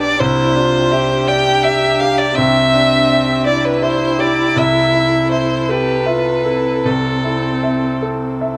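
Neoclassical piano and strings in 6/8 with rubato and uneven beats, this melancholic, fragile passage, cut from a longer piece, sets a single bowed violin with rich, smooth vibrato singing the melody up front until 8.0 seconds. Beneath it, a brilliant concert grand with deep bass and a focused solo viola share the accompaniment, both touched by slapback echo, while a chamber string ensemble holds sustained chords in the background, moving from Cadd9 to Am/C. The outdoor recording carries light reverb and is free of room sound.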